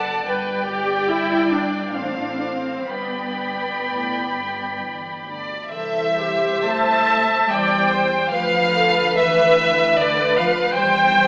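Up front and intimate, a warm violin section with a soft attack carries the second line above a darker violin melody with a smooth top, both played sul tasto, in a serene, tender slow romantic movement for string orchestra in C major, moving with rubato in 3/4 at around 61-77 BPM. A lush, woody viola section joins at 0.3 s with accompaniment, while a close cello section and a double bass section set in the background hold the bass, every part bowed with vibrato. Cut from a longer piece, the music moves into a new section at 5.7 s, and the whole is bathed in scoring-stage reverb and filtered through an AM radio sound.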